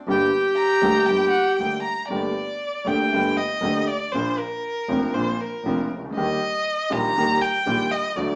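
Heard through vinyl crackle, a small-speaker tone and a wet studio reverb, this passionate, melancholic rubato tango fragment, played live in one room, opens with a reedy bandoneon melody that stops at 1.6 s over a boxy, long-sustaining grand piano and an earthy, distant bowed double bass, while a warm violin enters at 0.6 s and takes an expressive solo from 2.1 s, full of vibrato, soft attacks and portamento.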